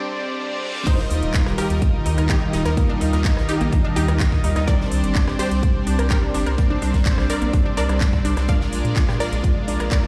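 A straight 4/4 pulse at 126 BPM drives this uplifting, expansive stretch of progressive house in Eb major, cut from a longer piece. It opens on a brief break with a background reverse cymbal, while a smooth, full-bodied soft supersaw plays stabs with pumping and tape echo from the very start. A drum fill lands at 0.6 seconds, and the drop arrives at 0.9 seconds with a background impact. There, a punchy, tape-warmed electronic kick sits up front, joined by a house drum kit of metallic hats, handclaps, rim clicks, toms and crash, while a very quiet, airy acoustic kit adds snare and hi-hat played with bundle sticks. A round, deep analog bass enters at 1.1 seconds, dark and sustained with sidechain pumping. Behind them, a bright unison pluck carries the melody through delay, a detuned analog pluck spins arpeggios with chorus and tape echo, and a lush, warbling unison pad holds very quiet sustained chords. 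The harmony moves from Csus2 to Ebadd9, back to Csus2, and closes on Bb7, the mix heard through a stone room reverb as if played on a big sound system in a bare room.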